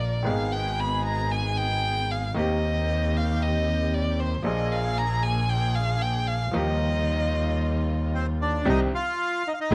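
Melancholic and sultry, this rubato tango excerpt in Eb major at 114 BPM opens with a rich, focused bowed violin carrying a solo line over a bright, woody upright piano, dark floating sul tasto string stabs and an up-front, boxy bowed double bass, while a reedy bandoneon takes the melody from 8.1 seconds, all captured with close, detailed microphones and light reverb.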